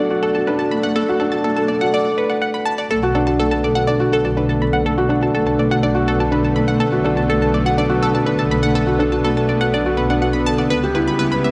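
A lush hall reverb surrounds this short cut from a longer piano and strings electronica piece, hypnotic and melancholic at 123 BPM in a straight 4/4. Up front, a felt-muted upright piano plays a soft, intimate riff with a dark, vintage tone and a touch of delay, while a bright, nasal analog pluck spins arpeggios above it through chorus, phaser and delay. Behind them, a thick, detuned unison pad holds sustained chords with a slow attack, its sawtooth and square-wave body warbling under chorus. The opening serves as a build-up, and at 2.9 seconds the drop arrives as a symphonic double bass section enters, its bowed, woody low notes carrying vibrato. The harmony rests on Bm7 before shifting to C#m7b5 at 10.7 seconds.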